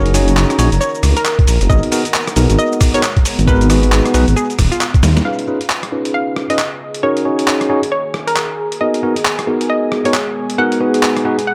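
An echo-heavy, lightly reverberant mix carries this moody, bouncy two-step UK garage excerpt at 135 BPM in G# dorian with swung sixteenths, where a gritty, pitched-down sampler-style kit of snare, rim click, hi-hat, cabasa and handclaps is briefly joined by a thumpy electronic kick, a rumbling detuned saw bass sits up front until 5.2 seconds, bright bell-like tine electric piano stabs ring through tape echo, a hollow square-wave pluck carries the melody with chorus and analog delay, and an airy, breathy pad and a deep, dark ambient pad pump in the background, with filter sweeps on the piano and a pad from 5.3 seconds as the chords move through F#6, G#m7 and C#7.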